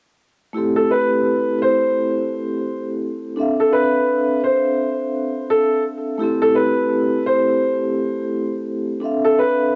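Ringing, metallic vibraphone accompaniment with a slow motor vibrato opens this moody, dark hip hop passage cut from a longer piece at 0.5 s, and at 0.8 s a woody, open upright piano melody with analog delay joins up front over swung sixteenths at 85 BPM, both parts filtered and cassette-tape colored as Am7 and Dm7 alternate in A minor within a small room's light reverb.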